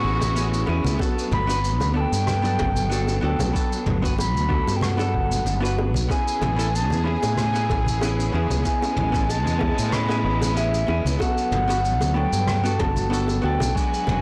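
Relaxed and smooth, this 94 BPM sunset chillout excerpt with a light 16th-note swing sets a pure, vibrato-laced wooden flute melody with delay over a dark, sampler-gritty hollow-body jazz guitar accompaniment, a lush, distant bowed string section, an up-front growly fretless bass with tube saturation, roomy brushed drums entering at 0.2 seconds alongside soft-handed congas and bongos, and a thumpy, gritty electronic kick arriving at 1.0 second, all moving between Amaj9 and Gmaj7 in a small room with a blown-out, overdriven sound.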